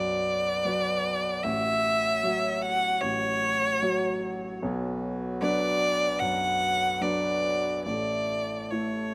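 A solo bowed violin carries the melody, its tone rich and focused with a smooth top and vibrato, set up front with a slapback echo trailing each phrase. This brief neoclassical fragment for piano and strings, cut from a longer piece, moves in a rubato 4/4 that feels longing and melancholic. A warm, natural-sounding grand piano plays the accompaniment close at hand, reaching from deep bass up to the violin's lower register. Further back, a reedy, breathing pedal harmonium holds mellow sustained chords. The harmony moves from Bm to F#m/A at 1.4 seconds, back to Bm at 4.6 seconds, and settles on A at 7.8 seconds. The sound is open and unenclosed, recorded outdoors with light reverb, and all three parts play together from start to finish.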